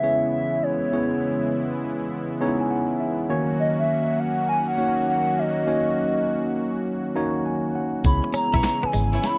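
New jack swing R&B at 101 BPM in C# dorian, bouncy and confident with a swung 16th-note feel, where a hollow, woody clarinet-like synth lead with chorus, vibrato and digital delay carries the melody over an up-front tine electric piano that adds fills and a soft, detuned sawtooth analog pad moving from C#m7 to D#m7, before a thumpy 12-bit drum machine with handclaps and tambourine and a round, foam-muted fingered bass arrive at 8.0 seconds, followed by a bright direct-recorded guitar riff with analog chorus at 8.2 seconds and brief lush bowed string stabs at 8.5 seconds in the closing moments, all set in a dark, moderately roomy production cut from a longer piece.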